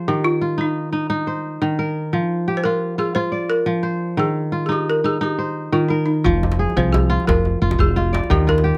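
In a flowing 12/8 lilt at 117 BPM, this hypnotic West African excerpt in F dorian opens with a mellow, ringing fingerpicked kora weaving crisp arpeggios up front and a dry, woody balafon melody played with rubber mallets, until at 6.3 seconds a dark, hollow-bodied fretless electric bass bathed in lush chorus and a tight, cracking djembe under soft hands join in, all captured by close, detailed microphones with little reverb.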